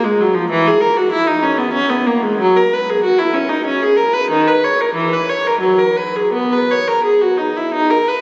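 A single bowed viola stands up front, its clear, focused tone carrying vibrato as it plays alone from 0.0 to 8.2 seconds. This is a classical, baroque-style suite movement for unaccompanied viola in B major, moving in 3/4 with a rubato feel that drifts between 78 and 99 BPM. The mood is radiant and dance-like, with the line ranging from D#3 up to C#5. The instrument sounds close, yet it is bathed in a wet cathedral reverb with a long 6.8-second tail, layered with a club reverb and compression. Captured on a phone in the room, this brief fragment is cut from a longer piece.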